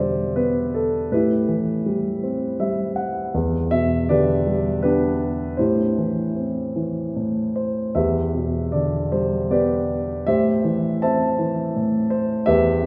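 In 3/4 with free rubato at about 74-84 BPM, this lyrical classical solo for concert grand piano unfolds in a dark, reflective mood, moving between Em7 and Am7 with a brief Am9 colour early on. The piano sounds mellow and natural, placed up front with deep bass, spanning E2 to A5, and it adds a short fill between 2.2 and 3.3 seconds. A long, wet church reverb surrounds the instrument, and the passage is cut from a longer piece.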